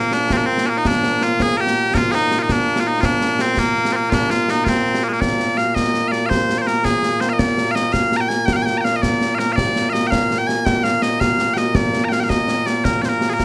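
Scottish traditional pipe music in a ceremonial, proud mood, moving at 110 BPM in a straight 6/8 in Bb mixolydian, with tuning set to A4 = 435 Hz. Loud, piercing bagpipes carry the melody up front as a continuous solo voice from 0.0 to 13.4 seconds, spanning Bb2 to Bb5. Concert snare and bass drum join at 0.1 seconds with an acoustic, live-room sound and bright cymbals, all set in moderate studio reverb, and the piece shifts to a new section at 5.2 seconds in this cut from a longer work.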